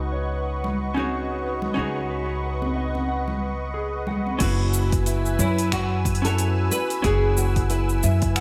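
A woody, thumpy upright bass sits up front in this relaxed sunset chillout piece, plucked pizzicato on gut strings at 91 BPM in 4/4 with a light swing on the sixteenths. Around it, a clean, compressed hollow-body jazz guitar with delay plays accompaniment, a dark, fingered electric guitar adds arpeggios in the background with subtle chorus and delay, and a thick, detuned sawtooth pad holds sustained chords through chorus and phaser. Bright, distant congas enter at 0.6 seconds, and at 4.4 seconds the harmony moves from C#9sus4 to F#9sus4 as they give way to an overdriven deep house kit with metallic hats, cabasa, crash, finger snaps and gated reverb, layered over a deep electronic kick. A full-bodied, fingerpicked nylon-string guitar takes the melody from 5.4 seconds, coated in lush chorus and delay. A moderate hall reverb and bright 1980s-style digital production give this short cut from a longer piece a warm, easygoing glow.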